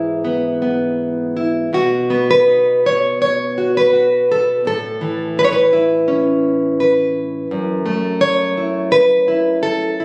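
Captured on a phone in the room with a light wash of studio reverb, this nostalgic, hopeful folk fragment at 83 BPM in 4/4 features a solo nylon-string guitar, fingerpicked up front with a bright, full-bodied classical tone, drifting in a rubato feel through E/G#, B, Aadd9 and F#m7 in B mixolydian across its 10 seconds.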